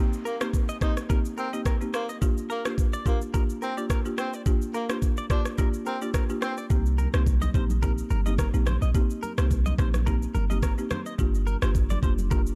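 A very quiet electronic downlifter and a woody, rustic folk marimba played with medium mallets open this sultry, mellow afrobeats excerpt in C minor, moving at 107 BPM in 4/4 with a gentle sixteenth-note swing. An up-front afro-pop drum kit of knocking kick, rim click and shaker enters almost at once, electronic and produced yet re-recorded in a large room. A breathy, whispered tenor saxophone carries the intimate melody with light vibrato and a soft attack until 6.6 seconds, while a twangy, compressed clean electric guitar picks a bright riff through analog chorus and tape echo. At 6.7 seconds a deep, boomy 808-style bass arrives up front with a fast, decaying attack, and ringing, close hand-played congas join in the background soon after. The chords alternate between Cm7 and Gm7, and the dark production keeps reverb to a minimum, so the cut from a longer piece feels dry and close.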